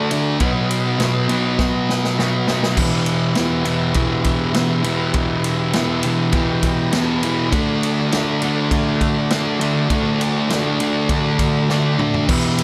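A thick, double-tracked fuzz guitar sits up front in this gritty, menacing garage rock clip, picking a low, distorted riff in E minor at 101 BPM in a straight 4/4. Behind it, a mellow vintage combo organ holds sustained chords with heavy vibrato, its clean tone stepping out for a fill between 5.7 and 7.5 seconds. A vintage acoustic drum kit, heard naturally in a small room, drives the groove with a punchy kick, medium-tuned snare, ride and crash cymbals, and toms, breaking into fills at 1.6 and 11.7 seconds. The harmony moves from B to Em and then to D, and a moderate small room reverb gives the band a close, raw feel. The clip is cut from a longer piece.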